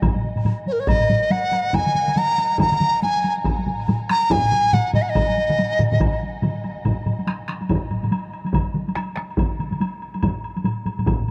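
A large bamboo dizi sits up front in this ceremonial, powerful Japanese traditional taiko ensemble piece, its airy, buzzing-membrane tone carrying tongued phrases with vibrato from 0.7 s until it falls away at 6.2 s. Beneath it, several taiko groups drive a swung sixteenth-note feel in 4/4. One group struck with hard sticks sounds close and dry, while another, played with heavy sticks, comes from a small room. A third hard-stick group sits further in the background, and a fourth, with heavy sticks and a vintage, band-limited color, enters at 1.7 s. A woody woodblock in a live room ticks quietly throughout. The dark, warm production is bathed in a huge ambient reverb, and the passage, cut from a longer piece, moves from its opening section into a second one where the drums and woodblock carry on after the melody has ended.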